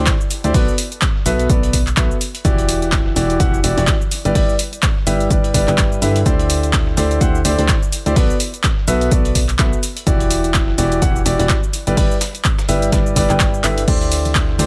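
Piano house at 126 BPM in G major, this euphoric, feel-good excerpt from a longer piece rides a swung 16th-note groove in 4/4. A clear, intimate baby grand piano sits up front playing the riff, its audible action noise adding a natural touch, with sidechain pumping and a digital delay around it. A round, mellow FM bass with a fast attack and decaying tail carries the low end, pumping along under the same sidechain. The drums layer a dry, punchy electronic kick, an overdriven analog drum machine supplying crash, handclaps, hi-hat and shaker, and a very quiet, gritty sampler-style kit adding hi-hat, shaker and a medium-tuned snare. A drum fill lands at 13.6 seconds, and bright congas and tambourine slip in very quietly at 13.9 seconds, all within a digital ambience as the harmony cycles through D9sus4, Bm7, Em9 and G6.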